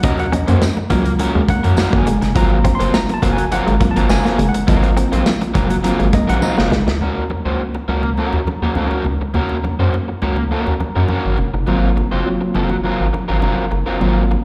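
A crunchy breakbeat drum kit with a tight kick and a saturated, gritty edge drives a hypnotic, funky 103 BPM groove in Eb dorian, alongside a rubbery, bouncy square-wave bass up front, background congas and a jingly, vintage tambourine. A bright, overdriven guitar with harmonic tremolo and slapback echo comps over Ebm7 and Ab13 chords, while a worn, slightly out-of-tune tine electric piano takes a solo in the opening half and a clean, fingered semi-hollow guitar riff sits in the background with spring reverb. A drum fill at 6.4 seconds ends the drums at 7.0 seconds, leaving bass, congas and guitar to carry this live gig heard through the venue's PA in a recital-hall ambience until the electric piano stabs return at 11.7 seconds.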